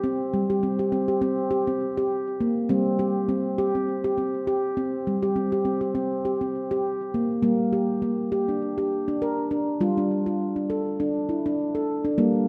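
A spacious concert hall bloom surrounds this short passage, cut from a longer piece, with a reverb tail of 2.1 seconds trailing after each note. It is meditative world music in G minor at 101 BPM in 4/4, with a gentle swing on the sixteenths. A solo handpan of nitrided steel carries everything, struck with the fingertips and close-miked so it sits full and up front, its ringing tone touched with delay. The harmony rests on a C over G colour before settling into G minor at 7.4 seconds, then shifts to D minor over G at 9.8 seconds, keeping the pedal on G throughout. Moving between G3 and Bb4, the playing holds a calm, unhurried mood that suits quiet reflection.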